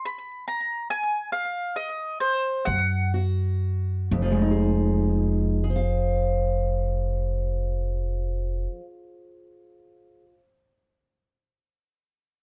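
A slow, straight 12/8 lilt carries this soulful, smoky fragment of acoustic country blues, cut from a longer piece. It opens with the mandolin alone, its picked double strings sounding round and up front, touched by a slapback echo, while the pulse slows through the opening bars. At 2.7 seconds the fingerpicked parlour guitar, dark and boxy, joins with the pizzicato upright bass, whose gut strings give a woody, thumpy low end. The mandolin drops out at 3.1 seconds, and from 4.1 seconds the guitar and bass settle onto an Fm7 as the second section begins. The close, detailed miking and dry room keep every instrument intimate and present.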